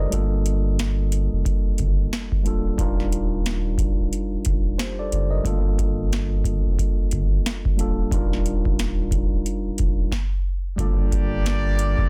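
A swung boom-bap hip-hop groove at 90 BPM in 4/4 drives this dark, moody cut in G minor, taken from a longer piece. A booming analog drum machine sits up front with a deep kick, crisp snare and metallic hats re-recorded in a small room, though the kick is muted for the opening beats until 1.4 seconds, and the groove halts in a stop from 10.1 to 10.8 seconds. Underneath, a soft, round dub sub bass holds the low end, while a mellow tine electric piano with a cassette-tape tint cycles between Gm7 and Ebmaj7 chords through its built-in speakers. At 10.8 seconds a smooth, tight horn section enters with octave-doubled stabs carried by tape echo as the harmony returns to Gm7. The mix is dry and close, with a dense, heavily limited modern master.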